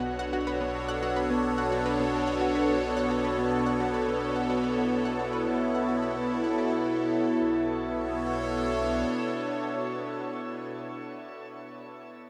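Cosmic and expansive, this excerpt of ambient, sequencer-driven space music at 108 BPM in B minor sets a bright, morphing wavetable pad up front holding a Bm7 chord through phaser, with a deep sine sub bass, a very quiet pulsing gated texture, and a round, chorused analog pluck riff with delay sitting in the background, all bathed in a wet shimmer reverb on cassette tape, while a synth arpeggio sound and the sub bass fade out before a brief closing section at 7.4 seconds.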